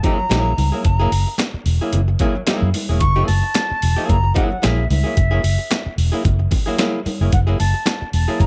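A swung sixteenth-note groove in 4/4 drives this funky, gritty cut from a longer piece. The breakbeat-style drum kit sits up front with a compressed, tape-warm sampler character, pairing a thumpy kick and a high-tuned snare with hi-hat and handclaps. Congas ring with hard hands in the background, their vintage tone band-limited, while a muted fingered electric bass enters at 0.3 seconds, dark, round and punchy, and sits prominently in the mix. A clean, hollow-bodied archtop guitar, picked and amplified, supplies accompaniment over a single F#9 chord. Above it all, a distant silver concert flute carries the melody with a pure, straight tone, a crisp attack and an expressive touch, set in a digital ambience.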